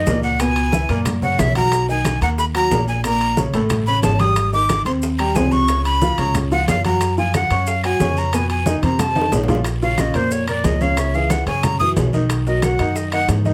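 Fiery and sultry, this Afro-Cuban jazz passage, cut from a longer piece, drives along at 182 BPM in a straight 4/4, settling into Bb minor from 9.7 s. A breathy, bright metal flute sits up front with vibrato, a crisp attack and audible chiff, carrying the melody between C5 and Eb6. Beside it, a natural-sounding baby grand piano, also up front and warm in tone, supplies the accompaniment, while a woody, thumpy pizzicato upright bass on steel strings anchors the low end. The percussion is dense: low-tuned congas with a thin skin played with soft hands, tight, high-tuned bongos with a compressed, saturated edge, ringing metal-shell timbales, very quiet woody claves, a raspy guiro and grainy, mellow maracas, several of them tucked into the background. A drum fill starting at 8.8 s launches a flute solo at 9.7 s, as the harmony moves from chords like Dbm7, Bmaj7 and A7 toward Bbm, Dbm and Gb5. 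The whole band sits in a moderate club reverb.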